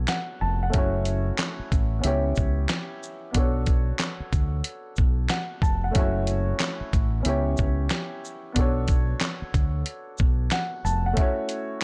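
A swung boom-bap hip-hop groove at 92 BPM in 4/4 carries this dark, moody excerpt in B minor, cut from a longer piece. A dusty, sampler-style kit drives it from 0.1 seconds, its thumpy kick, medium-tuned snare, handclaps, hi-hat and shaker compressed and coated in vintage 12-bit grit. Underneath, a fingered electric bass sits up front with a round, punchy tone, and it drops out at 11.1 seconds. An upright piano with a woody character supplies the accompaniment through filtered chords, moving from Bm7 to F#m7 and C#m7b5 before returning to Bm7, with the cycle resuming on F#m7 at 6.0 seconds. The production is dark and dry, with little reverb, keeping every part close and intimate.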